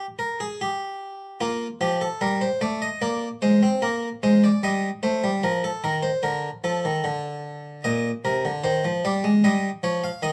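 Stately and elegant, this brief baroque-style two-part invention for solo harpsichord moves at an unhurried 75 BPM in a straight 4/4, set in Eb major and tuned to A4 = 441 Hz. The harpsichord, a Flemish-style instrument heard on one set of strings, plays alone from 0.0 to 10.3 s across a range from Bb2 to F5, its plucked tone airy yet round and placed up front. After a chordless opening, the harmony settles on Bb, moves to Bb7, then passes through Eb/G, Bb/D and Eb/Bb before reaching Eb7 at 9.4 s, as the fragment is cut from a longer piece. Light reverb surrounds the instrument, and the production leans dark and warm, with some lossy compression artefacts audible in the sound.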